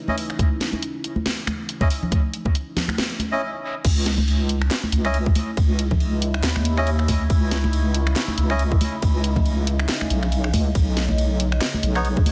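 A heavily limited, dense modern mix with light digital ambience opens this cavernous, heavy slice of deep dubstep at 139 BPM in C# minor, felt in half-time with a 57% swing on the sixteenths. An evolving, sawtooth-edged drone with moving overtones holds sustained chords under chorus and its own reverb, resting on C#madd9 before shifting to Badd9 at 10.8 seconds. Over it, a reedy, breathy melodica jabs out filtered stabs trailed by dub echo, while bright, close congas carry their own echo and a garage kit adds a cracking snare, bright hats, handclaps, finger snaps, ride and crash. A tight, layered electronic kick sits up front throughout, and after a brief stop the drop lands at 3.8 seconds. At that point a deep, soft wobble bass arrives, dark and detuned with chorus and tube saturation, sitting prominently in the mix alongside the kick.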